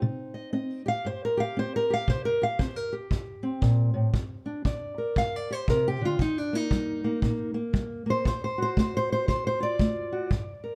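A fingerpicked steel-string acoustic guitar with a woody, old-string tone carries the melody up front in this brooding, mournful acoustic country blues excerpt at 117 BPM with a swung 4/4 feel, moving through Cm, Gm, Eb and D, while a punchy, natural small-room kick drum played with brushes enters at 2.1 seconds, all set in light reverb with a dark production.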